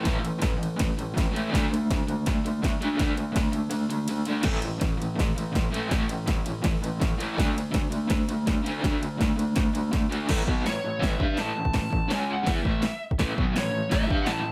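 A crunchy, bright overdriven electric guitar leads this rowdy, swaggering garage rock excerpt, its double-tracked, picked riff sitting up front with a tremolo effect and moving between A5 and D5 power chords. At 165 BPM in a straight 4/4 and A mixolydian, it is driven by a punchy analog drum machine whose kick and snare hit hard through an overdriven, up-front sound, with crash, ride and hi-hat filling out the kit. The kick and snare drop out between 3.7 and 4.5 seconds before the groove returns, and a break lands at 10.1 seconds. From 10.7 seconds a dark, compressed fuzz lead guitar enters with a picked melody in a higher register, sitting a little further back as the harmony shifts through A, C#5 and back to A5. Light reverb gives the whole a raw, close-quarters feel, and the passage is cut from a longer piece.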